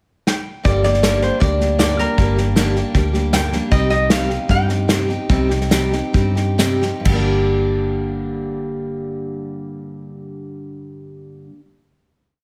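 A train-beat groove played with bundle sticks on an up-front unplugged drum kit, launched by a fill at 0.3 s, drives this lonesome and brooding honky-tonk and classic country piece in G minor at 125-157 BPM, as a nasal, metallic lap resonator guitar plays a fingerpicked slide melody built on motifs, a bright dreadnought acoustic guitar strums eighths in open chord shapes, and a dark, foam-muted electric bass holds a two-beat root and fifth, before the music slows from 3.7 s into a final G minor chord at 7.1 s under light reverb.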